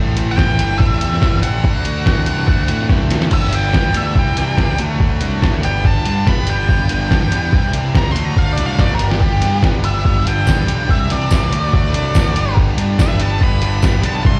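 Heard as a live gig through the venue's PA, with the reverb of a recital hall around it, this indie rock excerpt feels upbeat yet wistful, moving in a straight 4/4. A muffled, compressed sampler-style drum kit sits up front with a thumpy kick and a medium-tuned snare, and it plays a short fill from 2.9 to 3.3 seconds that opens into the solo section. Beneath it, a punchy, fuzz-laden picked bass drives the low end, also up front, while a raw, lo-fi garage guitar with overdrive and slapback echo plays a riff. A scooped, high-gain guitar sits further back in the mix, bright and distorted, and its riff is coloured by lush chorus, slapback echo and tape echo. From 3.3 seconds a dark octave-fuzz lead guitar takes a solo over a chord loop of G, Cadd9 and D, treated with plate reverb along with slapback and tape echo. A jingly tambourine joins quietly in the background from 10.5 to 13.9 seconds.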